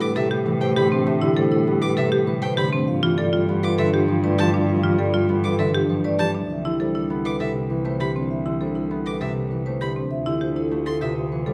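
From the first moment, a soft-malleted vibraphone carries a ringing melody over a mellow French horn second line, fingerpicked harp accompaniment up front, clear bowed violin arpeggios that stop at 11.1 seconds, bright, woody marimba arpeggios and a rich cello bass, in a meditative yet urgent minimalist classical pattern piece at 199 BPM in 6/4, cut from a longer work and set in a moderate recital hall reverb as the chords move from Am9 through G9 and Cmaj9 to Dm11.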